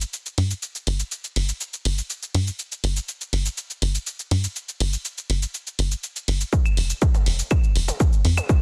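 A tight, plucky sawtooth sequencer bass with sidechain pumping and a dry, punchy analog drum machine of claves, filtered hi-hat, shaker and toms open this cinematic, hypnotic melodic techno excerpt at 122 BPM, building until a heavy, layered, tape-warm electronic kick drops in up front at 6.5 seconds for a drum fill, all set in a digital ambience with a dense, heavily limited modern master.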